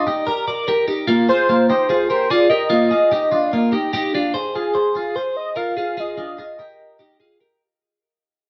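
Heard through the soft grain of cassette tape and a moderate digital studio reverb, this short indie pop fragment, cut from a longer piece, sounds bright and youthful. It moves at 148 BPM in a straight 4/4, passing through Ebmaj7, Bb7sus4 and Ebsus2 before settling on Fm7 at 4.3 seconds. A twelve-string electric guitar plays clean, twangy, compressed arpeggios up front, its picked tone colored by a phaser. Over it, a velvety synth lead carries the melody with a smooth, detuned sawtooth-and-triangle unison voice, fast in attack and sustained, shimmering with chorus and vibrato. Both parts sound from the opening moment, and the music fades out from 4.3 seconds until it ends at 7.6 seconds.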